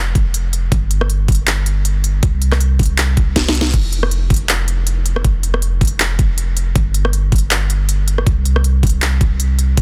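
A deep, boomy 808-style bass anchors this bright, euphoric future bass excerpt, its dark sine tone edged with a noise layer, a fast attack and a decaying tail, pumping under sidechain compression from the very start. An electronic kick joins at 0.2 seconds, layered and knocking, sitting up front with a tape-warm color and a small room ambience. Alongside it a trap drum kit brings a sharp snare, crisp hi-hats, handclaps, rim clicks and crash cymbal, set a little lower in the mix. The groove has a half-time feel with a light swing on the sixteenths, and the whole passage plays as a drop, briefly broken by a drum fill at 3.4 seconds before the drop resumes. The sound is dense and heavily limited in a modern master, with a digital ambience around it.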